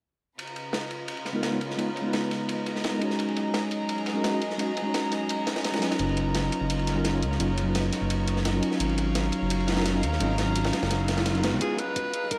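Dreamy and uplifting, this liquid drum and bass passage moves at 171 BPM in a straight 4/4, cut from a longer piece. A chamber string section holds reedy, gut-toned chords with light vibrato from the start, while a crunchy breakbeat kit of dark ride cymbal and saturated snare, filtered and echoed, runs beside layered electronic hi-hats. A mellow, clean tine electric piano enters at 1.3 seconds, its accompaniment drifting through tape echo over a progression from C#13 through F#69, Bmaj9#11/F# and G#13sus4. Smooth synth bass arrives up front at 6.0 seconds, blending sawtooth, square and triangle tones with a touch of ring modulation. A very quiet riser leads to 11.6 seconds, where a breathy, subtoned tenor saxophone steps forward with scooped notes alongside a gritty, thumpy electronic kick. The mix is echo-heavy and sits in a moderate spring reverb, giving the whole a hazy, floating depth.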